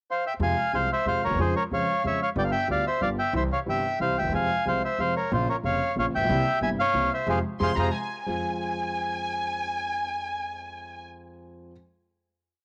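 A reedy, vintage bandoneon opens with a short pickup into a melancholic, tense tango waltz at 183 BPM in F harmonic minor, its motif-based song phrases partly doubled in thirds. A dark, mellow piano with deep bass, audible action noise and cassette-tape coloring joins a woody pizzicato upright bass to mark the accent on one in a rubato 3/4. A band accent lands at 7.3 s, and at 7.6 s an expressive bowed violin section, also tape-tinged and rich with vibrato, enters with answering phrases in the melody's rests before the piece settles on a final chord from 8.3 s, all heard as a home cassette recording with light reverb and small-room ambience.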